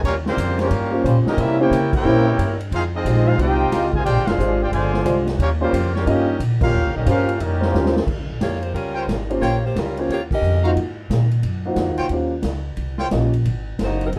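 Opening on woody pizzicato upright bass, a roomy, distant swinging drum kit and a trombone section in the background, this energetic big band swing cut at 179 BPM in Eb major brings in a bright trumpet section with light vibrato on the melody, mellow trombones holding sustained chords and a warm grand piano accompanying until 13.3 s, and after a drum fill at 7.7 s a tight, up-front saxophone section takes the melody while the trumpets return with present stabs.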